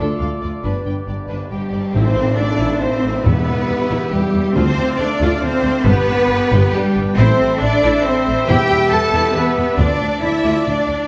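Dark and epic, this cinematic orchestral film cue in A minor moves at 138 BPM in a straight 3/4, cut from a longer piece. Lush, softly attacked symphonic violins carry the melody over a very quiet, focused second violin line, a smooth, even viola accompaniment, sustained chords from a distant, roomy French horn section and tight woodwinds, and a bass built from focused cellos and up-front, expressive double basses, while a pure, mellow flute ensemble joins on a second line at 1.5 seconds. At 1.9 seconds the full band accents as the second section begins, with round, soft-mallet timpani and a very quiet, bright tam-tam and cymbal swell marking the arrival, all set in a reverberant recital hall.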